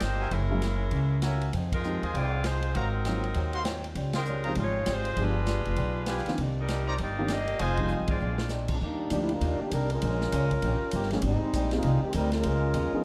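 A tight, bright saxophone section with a vintage tone and light vibrato carries the melody up front in this swinging, sultry big band excerpt, cut from a longer piece at 198 BPM in C minor before moving to Eb major at 8.8 s. Clear trumpets add ensemble stabs over a woody, thumpy upright bass on gut strings, while a dark, mellow baby grand with audible action noise and a boxy, picked swing-style acoustic guitar in the background fill out the accompaniment. The drum kit sounds airy and polished, with a punchy kick and medium-tuned snare, and a drum fill closes out the opening section as the horns drop away. At 8.8 s the clear trombone section takes over with a solo line for the rest of the clip, supported by piano, guitar, bass and drums. The harmony moves through rich extended chords such as Dbmaj9#11 and G7b9, and the production is dark with light reverb.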